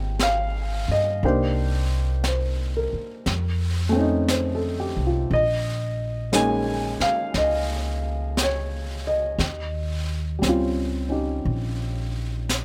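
Smoky and intimate, this short cut from a longer jazz piece moves at a slow swing. A warm baby grand piano carries the accompaniment with a natural, up-front tone, its short sustain and audible action noise drawing the listener close as it moves through minor ninth and dominant colours before arriving at an Eb13. Beneath it, a pizzicato upright bass on steel strings sounds woody and thumpy, sitting just as near in the mix. A brush drum kit enters at 0.2 seconds, softer in the balance, with brushed snare, hi-hat and a high-tuned snare heard in a studio room. Close, detailed microphones and little reverb keep the whole trio dry and immediate.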